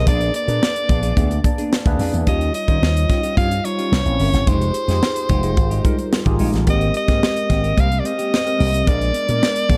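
A dark, warm studio sound with a sense of room frames this short excerpt of polished 1980s jazz-funk pop, breezy and urban in mood, moving in a straight 4/4. Up front, an edgy soprano saxophone carries the melody with forceful, pop-style vibrato. Beneath it, a punchy slap bass run through an envelope filter sounds bright and amped, while a tight funk drum kit, dry and airy, drives the groove with a high-tuned snare, snug kick and hi-hat. A clean tine electric piano heard through its built-in speakers fills the harmony with a lush chorus, and a semi-hollow electric guitar, fingered and hollow-toned with a subtle chorus, plays a riff in the background from 0.1 seconds. The chords move through rich, jazzy colours such as Bb7b9, Eb9, Fm9 and Abmaj9 before returning to Bb7b9 near the end.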